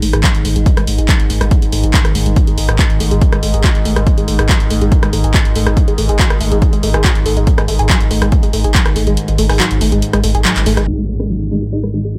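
A straight, driving 4/4 pulse at 141 BPM anchors this dark, hypnotic peak-time techno excerpt, where a punchy layered kick and tape-warm analog drum machine claps, rim clicks and pumping hi-hats drive beneath a tight, wave-folded sawtooth riff with phaser and a filter sweep, a round sine sub bass and an evolving detuned drone, until the kick drops out at 9.2 seconds and an up-front impact arrives with an aggressive, thick unison rave stab at 10.9 seconds.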